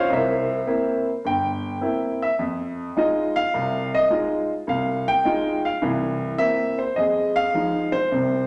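Moody and late-night, this short fragment of solo jazz features a lone upright piano with a clear, woody tone, placed up front in a swung 4/4 feel. The harmony moves between C7 and Fm7 across the 8.5 seconds, settling on Fm7 at 7.0 seconds, while the piano ranges from deep bass notes to the upper middle register. A wet reverb from a large studio surrounds the playing.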